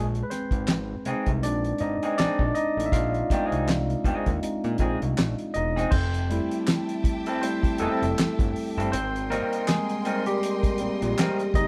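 A moderate stone-room reverb wraps this smooth, soulful neo-soul R&B cut at 80 BPM in F major, where a barky, lightly overdriven tine electric piano solos up front over a fat, detuned analog bass, a cloth-damped thuddy kit with dark cymbals and a tight kick, and a slightly broken-up, lo-fi guitar, until a lush bowed string section with vibrato and portamento joins at 5.9 s as the chords move from Bb9sus4 to Fmaj9 and Abmaj9.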